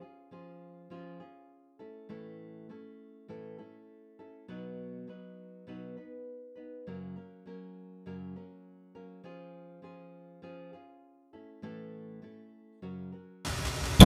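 A straight 4/4 pulse at 101 BPM carries this easy-going, sunny acoustic pop passage, cut from a longer piece. A fingerpicked nylon-string guitar plays alone from 0.0 seconds, its full-bodied, deep classical tone moving through C#/E#, A, B and F# before circling back through C#/E#, A and F#. At 14.0 seconds a dark, foam-muted electric bass lands up front with a round, punchy note, while a brush drum kit sounds a crash cymbal and a punchy kick in the background, its cymbals dusky and its top rolled off. The sound is dry, like a band playing live together in one room.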